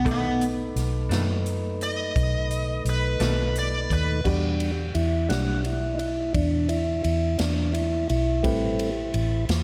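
A tonewheel organ with key click and a slow rotary speaker holds sustained chords, then takes a solo from 4.2 seconds in this brooding, mournful slow blues fragment in 12/8. Before that, a bright, overdriven lead guitar carries the melody up front over a clean, compressed semi-hollow guitar with tremolo in the background, while a concert grand piano with deep bass sits in the background throughout, all three touched by slapback echo. A round, foam-muted fingered bass stands up front over a polished big-band drum kit with dark cymbals and a punchy kick, and the mix has a big arena sound.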